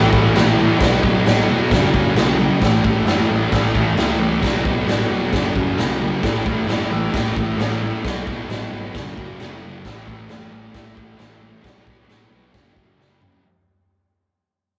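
A straight 4/4 pulse at 133 BPM drives this raw, swaggering garage rock clip in A major, cut from a longer piece and fading out across its full 13.4 seconds. Up front, a thick, double-tracked fuzz guitar picks a distorted riff that cycles through A5, B5 and F#5. Beneath it sits a hollow-body short-scale electric bass, picked and overdriven, with a round, dark, amped tone tucked into the background. The acoustic drum kit is also up front, with a punchy kick, a medium-tuned snare, toms and crash cymbal heard through a smooth, rolled-off top in a bright stone room. A drum fill closes the clip from 13.0 seconds. The rough rehearsal-room recording carries warm saturation and a moderate small-room reverb.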